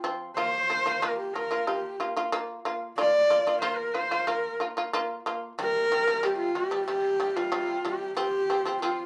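Galloping and vast, this 9.1-second cut from a longer Mongolian folk piece moves at 92 BPM in a straight 4/4 in Bb gong mode, tuned to A4 = 439 Hz, with a bright, husky horsehead fiddle singing the up-front melody with vibrato and portamento over a plectrum-plucked shamisen whose percussive, buzzing arpeggios also sit forward, the two playing live together in one room under a wet studio reverb through Bb5, C5 and F5.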